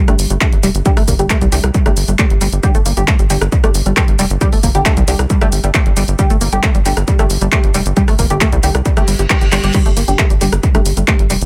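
A dry, echo-heavy mix carries this dark, intense stretch of driving peak-time techno at 135 BPM in a straight 4/4. A heavy, layered electronic kick and a punchy, overdriven analog drum machine with crash, handclaps, hi-hat, rim click, shaker and dub echo anchor a tight sawtooth sequencer bass that pumps with sidechain compression. Above them, a detuned, chorused synth riff with tube saturation and dub echo sounds alongside muted, full-bodied dub chord stabs soaked in phaser and tape echo, until an electronic reverse cymbal at 9.0 seconds leads into a drum fill at 9.5 seconds.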